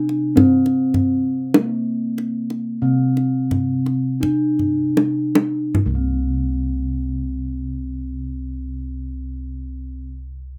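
A rough home-demo sound with light reverb frames this short, shimmering and ceremonial cut from a longer Javanese gamelan piece, moving slowly in 4/4 at 37-54 BPM and slowing down through its first half. A mellow, softly ringing bronze metallophone carries the melody while round, beating bossed gongs with an airy sheen hold the bass, both sitting up front. A deep, close and dry kendang played with hard hands plays a fill from 4.6 to 5.8 seconds before stopping at 6.5 seconds, leaving the metallophone and gongs to continue into the second section.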